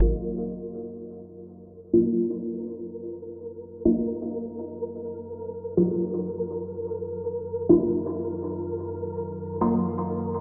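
A cavernous wash of stone-room reverb and a dull low-pass haze surround this meditative dub techno fragment in Eb minor, which drifts in free time over a single Ebmadd9 chord. Up front, a muted, nasal sawtooth chord stab echoes through dub delay and a phaser, while a dark, detuned analog pad with a sub octave sustains beneath it in chorus, both under filter sweeps. From 1.0 seconds, a grainy, flickering granular texture emerges on a held Bb4 with its own built-in reverb.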